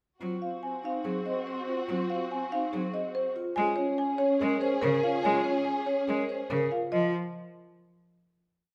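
A woody marimba carries a repeated short melodic cell over ringing, mellow vibraphone arpeggios, a rich bowed cello, a distant French horn with pulsing notes that swell and fade, and lush swelling string chords in this hypnotic, propulsive minimalist classical piece at 143 BPM in Ab mixolydian, moving from Ab7 to Bbm7 in a moderate large-room reverb before a final chord at 6.9 seconds.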